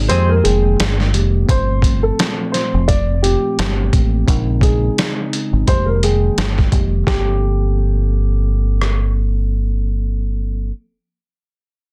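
A dark, woody upright piano melody opens this reflective, moody boom-bap piece at 86 BPM in G phrygian, over a mellow tine electric piano and a round, deep dub fingered bass sitting up front, while the sampler-style kit holds its kick back until 1.5 seconds. The gritty, pitched-down drums swing on sixteenths with a thumpy kick, a medium-tuned snare, rim clicks and hi-hat, as minor eleventh chords such as Fm11 and Gm11 sit underneath. The dense, heavily limited mix carries little reverb, and the piano drops out at 9.1 seconds before this cut from a longer piece ends.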